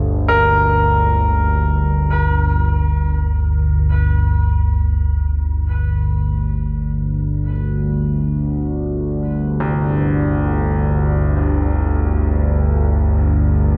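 A detuned, wave-folded analog drone opens this dark ambient excerpt in G minor, sitting up front with a slow attack, subtle chorus and a sustained, evolving low tone in free time. At 0.3 seconds a bright baby grand piano joins with brilliant, intimate arpeggios, its action noise audible and its long sustain trailing into a diffuse ambient delay, then it fades in gradually from 2.3 seconds. A cathedral reverb with a 5.4-second tail gives the whole piece a cavernous, shadowy depth.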